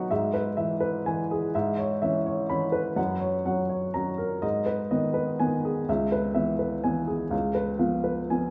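A single upright piano sits up front in a wet recital hall, where a 1.8-second reverb tail surrounds its woody, intimate tone and the mechanical noise of the action stays clearly audible. This short 8.5-second passage from a longer classical piano waltz moves in 3/4 at 125 BPM, with an elegant, sparkling mood. The playing is rubato, with uneven beats that give the dance a free, breathing feel. The solo piano ranges from C#2 in the bass up to B5. The harmony moves through E/G#, C#m7/G#, F# and G#m, then C#m7, before arriving on C#7.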